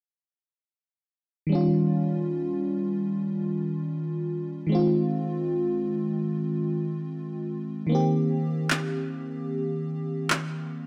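A dreamy FM electric piano with a soft pad layer and a mellow, chorused shimmer carries this moody, sensual contemporary R&B fragment at 75 BPM with a 16th-note swing, moving through Eb9, Fm7 and Cm7 from 1.5 s in a lush hall reverb, while overdriven electronic handclaps with a small-room character arrive up front at 8.7 s.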